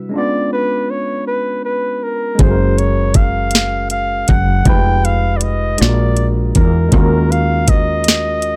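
A breathy flugelhorn carries the melody from 0.2 seconds in this sultry, late-night slow six-eight R&B excerpt, its vibrato, scooped notes and smooth top sitting up front over a worn, slightly out-of-tune tine electric piano heard through a combo amp. At 2.4 seconds a dark, round, woody fretless bass enters with a produced electronic drum kit of knocking kick, sharp snare and metallic hats. The dry, gritty hardware recording sits in a digital ambience.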